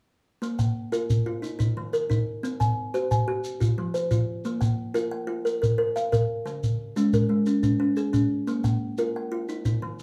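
The recording sits in a wet small room with a short 0.5-second reverb, heard from further back in the room, so the space wraps gently around the players. This is a rippling, warm passage of southern African traditional music built on a mbira-style interlocking cycle, moving at 119 BPM in dotted quarters in a straight 12/8 feel, in Bb equiheptatonic tuning and cut from a longer piece. A kalimba carries the arpeggios from 0.4 to 10.0 seconds, its short thumb-plucked notes woody, airy and hollow like a small box, spanning Db3+43c to Ab5+29c and sitting up front. A shekere plays percussion across the same stretch, its grainy, mellow acoustic rattle also up front with a live-room character. The harmony circles through Bb5, Eb5, C5, Fm and Db5 before landing on Eb, keeping the cycle turning in a single unbroken section.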